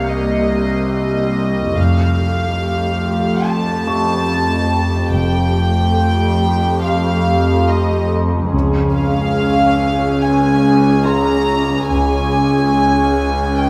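Eerie and tense, this cinematic suspense-score excerpt moves at 71 BPM in 4/4, with a floating, up-front sul tasto violin section carrying the melody over a woody viola section with vibrato, a pure, soft-attack cello section and a resonant, overtone-sweeping sawtooth-and-sine drone with chorus, while a mellow, very quiet baby grand piano adds texture, faint high violins sit in the background until 1.3 s, a distant double bass section enters at 1.8 s, and the harmony moves from Cm7 through Fadd9 to Db inside a moderate scoring-stage reverb.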